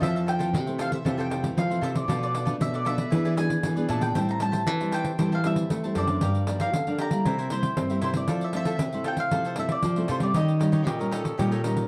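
Yearning yet lively, this samba-choro excerpt at 116 BPM sets a woody, double-strung mandolin melody over crisp cavaquinho, a dark, up-front fingerpicked nylon-string guitar, a second nylon-string guitar carrying the bass with audible finger squeak, and jingly, soft-handed pandeiro, all moving through jazzy changes from Fmaj7 to Eb9 in a moderate studio room before a breathy, growling tenor saxophone slips in with a second line at 10.9 seconds.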